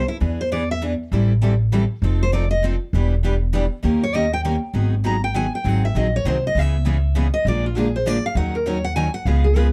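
A bright, up-front picked steel-string guitar with an auditorium body solos over this fiery, swinging gypsy-jazz excerpt in 3/4, backed from the start by a woody, thumpy pizzicato upright bass. Two picked steel-string accompaniment guitars join at 0.2 and 1.1 seconds: one a full-bodied jumbo with fresh strings and audible finger squeak, the other a boxy parlour. The dark production carries light reverb, and the chords move from E7 and Am7 into a minor-key passage from 4.7 seconds.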